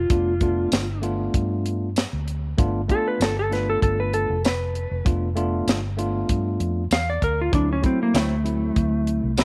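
A tight funk drum kit sets a straight-eighth groove at 97 BPM in 4/4, with a light swing on the sixteenths and a dry, up-front sound built from hi-hat, a tight kick, a high-tuned snare and tambourine. This short, gritty and rollicking soul blues excerpt sits in G mixolydian, resting on a G9 chord before moving to D9 near the end. A vintage fingered electric bass, amped and foam-muted with a dark, round tone, anchors the low end, while a tine electric piano heard through its built-in speakers adds warm accompaniment up front. Carrying the melody from the start is a clean lap steel guitar played with a slide, its dark, fingered tone forming a solo that runs the length of the clip. At 8.1 seconds a twangy, compressed electric guitar, recorded direct and picked, slips in behind with bright stabs coloured by lush chorus. A small room reverb gives the mix a close, intimate space.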